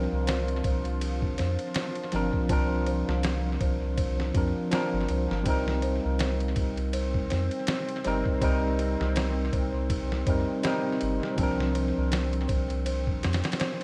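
Trip hop at 81 BPM in 4/4 with a swung sixteenth-note feel, dark and cinematic in mood, cut from a longer piece. A worn, slightly out-of-tune tine electric piano sits up front, lightly overdriven through a combo amp, with harmonic tremolo, gritty 12-bit sampler character and tape echo colouring its accompaniment over chords moving from Bbadd9 to Cm7 at 5.5 seconds and back at 11.4 seconds. Beneath it, a soft, round dub sub bass holds the low end, while a deep, moody ambient pad with chorus and its own reverb sustains evolving chords in the background. A delicate, tinkling music box plays airy arpeggios through tape echo, also set back in the mix. The sampler-style drum kit enters at 0.3 seconds, pitched down and compressed, with a thumpy kick, medium-tuned snare and ride cymbal carrying a roomy, up-front presence and tape echo. The overall mix is dry of reverb but heavy on echo.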